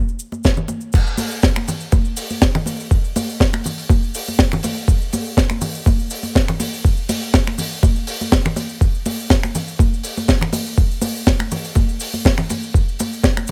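A gritty, thumpy electronic kick drum with overdrive and small room ambience sits up front in this cosmic, sensual nu-disco cut at 122 BPM with a light 16th-note swing, joined by a dry, polished funk kit with a high-tuned snare, hi-hat, finger snaps and crash cymbal, while bright, close cabasa and congas played with hard hands open the passage at 0.1 seconds before the drop arrives at 0.9 seconds.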